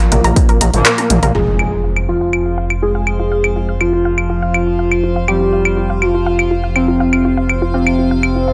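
Melodic techno at 122 BPM in F minor, melancholic and hypnotic, this short cut from a longer piece opens with a punchy, overdriven analog drum machine of claves, handclaps, hi-hat and toms, a gritty, nasal driven synth bass, a detuned unison pluck playing arpeggios and bold synth brass stabs set in the background, with a distorted electronic kick heard only briefly around 0.4 s and a drum fill at 0.9 s as the kick drops out. Then at 1.3 s an electronic impact lands on an Fm chord, a fat, warbling analog lead with lush chorus and tape echo takes the melody, and a filter sweep runs across the pluck. From 1.8 s an evolving, phaser-washed wavetable pad holds bright sustained chords, while the pluck, bass, brass, lead and pad all pump under sidechain in a dry hardware recording with light reverb.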